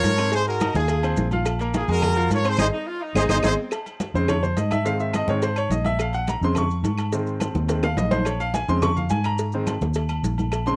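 This salsa excerpt has a dry, close sound, like a 1970s studio session, and a fiery, driving feel, cut from a longer piece. A brilliant, tight horn section carries the melody up front in the opening bars, and a clear saxophone section with light vibrato and slapback echo adds a short second line from the background. A drum fill and band accent mark the turn at 2.6 s. From 3.7 s the bright baby grand piano takes a polished, intimate solo, with audible action noise and short sustain. Beneath it, a dark, round, foam-muted electric bass sits punchy and up front, while ringing congas, high-tuned cowbell and bongos, saturated timbales and agogo bells, woody claves and grainy maracas fill out the percussion, and another drum fill arrives later as the harmony moves between Ab, Fm and Bbm7.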